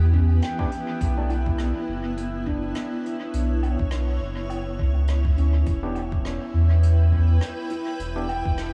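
A swung 103 BPM 4/4 groove of deep, tape-toned electronic kick in the background and a vintage brush kit's hi-hat, rim click and woodblock, rolled-off and trailing dub echo, anchors this spacious, meditative ambient dub excerpt in E dorian, where a round, up-front sine sub bass with tube saturation sits under a cloudy, slow-blooming granular pad holding Em and Bm chords, a bright, ringing stainless-steel handpan sends tape-echoed arpeggios from the background, and a barky, gritty overdriven tine electric piano fires dub-echoed stabs at 0.6 s and again from 5.8 s.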